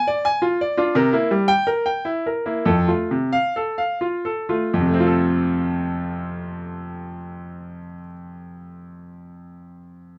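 A bright grand piano plays alone through this short baroque-style suite movement, cut from a longer piece and lasting about 10.2 seconds. In F major and a lilting 3/4, the music feels flowing and dance-like, with a rubato pulse that ranges between 83 and 116 BPM and slows over the first 4.7 seconds. The harmony moves from a rootless diminished chord on B through a rootless C7 and settles on F at 2.7 seconds, after which a contrasting second section begins at 4.7 seconds. The piano spans F2 to G#5, and its brilliant tone and short sustain give each note a crisp, clear edge. Close, detailed miking places the instrument up front, with just a light touch of reverb around it.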